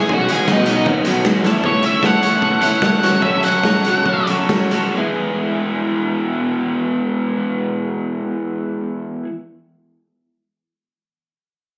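A straight 4/4 pulse at 132-155 BPM opens this upbeat, carefree indie rock excerpt in E major, where a punchy, up-front garage drum kit and a growly picked bass join a gritty octave-fuzz lead guitar solo with slapback echo that slows from 1.6 seconds, while a chorused clean electric guitar and a dark, overdriven rhythm guitar keep riffing over Badd9, Aadd9 and F#m before the music settles onto E, all in a small room with light reverb and a phone-captured sound.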